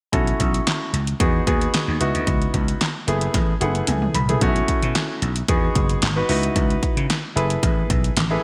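Early-eighties boogie funk at 112 BPM with a funky, danceable feel, this short cut from a longer piece sets a growly, amped slap bass and a punchy electronic pop drum kit of handclaps, metallic hats, fat snare, kick and toms under an up-front, natural grand piano cycling through B9sus4, Emaj7, C#m11 and F#m11, with piano and drum fills from 3.3 to 4.4 seconds, all framed by light digital reverb and bright 1980s-style production.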